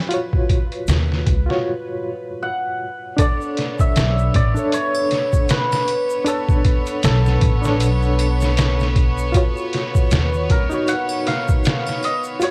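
Dark and melancholic, this trip hop fragment opens on a reedy, slightly out-of-tune electric piano with fast tremolo, while a tense, string-like drone hangs in the background until 1.6 s. Gritty, pitched-down sampler drums with a thumpy kick sit up front beside a woody, growly pizzicato upright bass, and a soft egg shaker and triangle tick behind them. A shimmering cimbalom melody with tape echo arrives at 2.4 s, floating sul tasto violins join at 3.2 s, and the whole room sounds worn through warbling cassette tape with drifting pitch.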